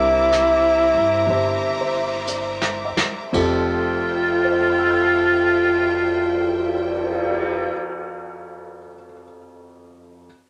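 Swung in a slow 4/4 that slows down through the first 3.3 seconds, this tender, late-night jazz ballad fragment sets a breathy, vibrato-rich alto saxophone with scooped notes up front over an intimate grand piano with audible action noise, lush bowed strings, a woody pizzicato upright bass and a vintage brush kit with dark cymbals that adds a fill from 2.3 seconds, all moving from C9 to Fmaj9 in a moderate studio reverb before the piano rings on alone until 10.3 seconds.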